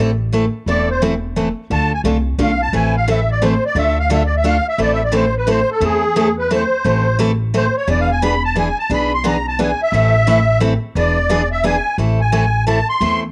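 A reedy, shimmering musette accordion carries the melody from 0.7 seconds, close-miked, dry and up front with a cassette-tape grain, in a fiery, bittersweet acoustic string swing in A harmonic minor at 175 BPM in a swung 3/4. Beneath it, a bright, full-bodied picked dreadnought guitar, also with a cassette-tape tint, and a woody, thumpy pizzicato upright bass strung with steel drive the accompaniment through Am, Dm and E7. The home cassette recording sits in light studio reverb, and the passage is cut from a longer piece.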